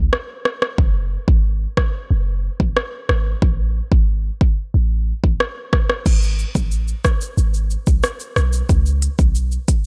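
A deep, boomy 808-style bass with a clean sine tone and fast, decaying attack sits up front beside an electronic afro-pop drum kit of deep kick, smooth hi-hat, shaker, rim click and crash cymbal, giving this dry, tough and hypnotic dancehall cut a straight feel that shifts into a new section at 6.1 seconds.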